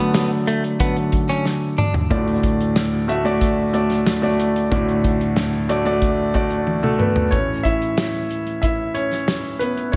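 A straight 4/4 pulse at 92 BPM drives this hopeful, warm piano-driven pop passage, cut from a longer piece. An intimate, polished concert grand sits up front, with deep bass, long sustain and audible action noise, opening on D and taking the spotlight again when the harmony moves to A at 7.3 seconds. A clean, direct-recorded electric guitar plays a short, compressed picked riff with warbly pitch drift and slapback echo until 1.9 seconds, while an acoustic country kit with a punchy kick, a medium-tuned snare, hi-hat and toms adds fills, all bathed in lush hall reverb for a big arena sound.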